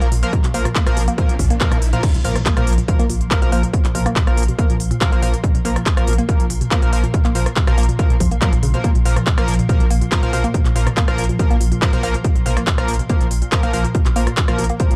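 Driving peak-time techno cut from a longer piece, dark in mood, where a heavy layered kick and a techno kit of crash, handclaps, smooth hats and rim clicks push a deep saturated sub bass, a woody wave-folded pluck riff, edgy sync-sweep polysynth stabs with chorus and analog delay, and a swarming, warbling drone, all pumping together in a dry, gritty hardware recording as a very quiet riser and impact ushers in the drop at 2.0 seconds.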